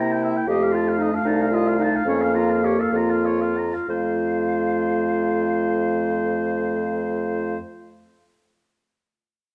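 In a rubato 6/8 that slows over its first 3.9 seconds, this graceful, cheerful cut from a quick classical-period wind quintet movement sets a pure, expressive concert flute melody with vibrato over a clear, distant oboe second line, a smooth-topped clarinet and a warm French horn in accompaniment, and an up-front, mellow bassoon bass with light vibrato, moving from F7 to Bbm/F before settling on F in a dark recital hall with moderate reverb.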